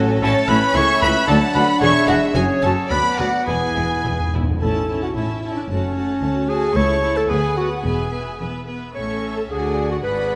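Cheerful and graceful, this quick classical-period passage for symphony orchestra, cut from a longer piece, moves in a flexible rubato 2/4, with a clear, intense violin section singing the melody over a second violin line and violas of rich, focused tone, while a distant cello section and smooth, even double basses carry the bass. A pure, silver flute and a roomy oboe add second lines and a warm horn section holds sustained chords until 4.3 s, as soft-mallet timpani with round calf heads play a fill from 3.5 s. At 4.6 s a present, up-front clarinet enters with its own second line, and the whole orchestra sits in the wet reverb of a scoring stage.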